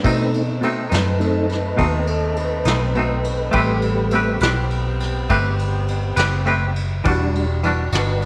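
A mournful, brooding slow blues in 12/8, cut from a longer piece, where a lightly overdriven tonewheel organ with key click, chorus vibrato and slow rotary speaker takes the solo over B7b9, Am9 and Em9 chords, backed by a bright, twangy clean electric guitar with tremolo, a loose saxophone section holding sustained chords, a round, foam-muted fingered bass up front, and a dark, rolled-off brush drum kit with punchy kick, all set in a moderate echo chamber reverb with some lossy compression artefacts.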